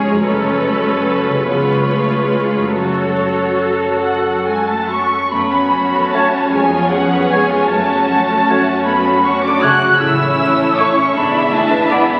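Classical orchestral music: a slow, tender romantic movement in F# minor and 6/8, moving at roughly 45-54 dotted-quarter beats per minute with a flexible, rubato feel, heard as a fragment cut from a longer piece. A lush first violin section carries the melody with smooth, warm vibrato, while a focused second violin section sings a supporting line and a rich viola section fills in the bowed accompaniment. A mellow, ringing concert harp plays arpeggios, and cello and double bass sections sit in the background to anchor the bass, the basses close and clear. A pure, hollow flute adds another line from 4.1 s, dark French horns enter with very quiet, soft-attack sustained chords at 5.3 s, and from 6.1 s a distant, roomy oboe, a very quiet clarinet and a vintage-toned bassoon join in. The harmony leans between F# minor and its dominant before touching A major and E7 near the close. The whole sounds like a very old 78 rpm record, with vinyl crackle and a long, wet concert-hall reverb.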